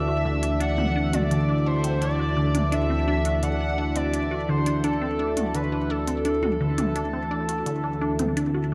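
A steady, straight 4/4 pulse at 85 BPM anchors this cosmic, hypnotic fragment of ambient, sequencer-driven space music, cut from a longer piece and resting on a single Dadd9 chord. A fat analog bass holds D2 up front, thick and mellow, while a sweeping resonant pad sustains chords between E3 and F#4, its wave-folded tone evolving through chorus and phaser. Over this, a shimmering pulse-width lead carries the melody between A4 and F#5, retro and warbling with vibrato, chorus and delay. From 0.1 seconds a juicy, squelchy blip pluck plays a riff between D3 and F#4 through phaser and delay, and from 0.4 seconds a minimal click drum kit adds electronic hi-hat and toms with a tape-tinged, small-room character and delay. A bubbling stepped-filter texture sits in the background around E5, and a moderate plate reverb of 2.7 seconds soaks the mix in a dreamy haze.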